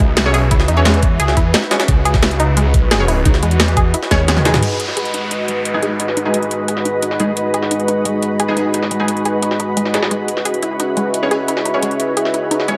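A snarling, distorted saw bass growls up front through the opening 4.6 seconds of this tense, aggressive dark technical drum and bass excerpt in G# minor at 175 BPM, driven by a knocking electronic kick, a cracking snare with metallic hats and a gritty, pitched-up jungle sampler kit in the background, while a lush unison pluck arpeggio with tape echo, bold orchestra-hit-like synth stabs, an ethereal airy pad and, from 4.6 seconds, a moody analog pad and brief downlifter fill out a lush hall reverb as a filter sweeps the arpeggios over chords moving from C#m to G#m and back to C#m.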